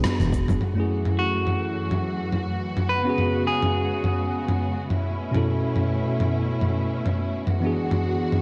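Relaxed and warm, this sunset chillout excerpt moves at 105 BPM in F# minor with a 16th-note swing. It opens on a band accent as congas, a round fretless bass and a punchy, overdriven electronic kick sit briefly beneath a bell-like tine electric piano with tape echo and a gritty, sampler-style soul drum kit of hi-hat, rim click, shaker and toms. From 0.6 s a lush bowed string section holds sustained chords through F#m7, C#7sus4 and B9sus4, while from 1.2 s to 4.9 s a bright, picked clean electric guitar carries the up-front melody with delay, all set in a moderate hall reverb with the worn, warbling pitch drift of old cassette tape.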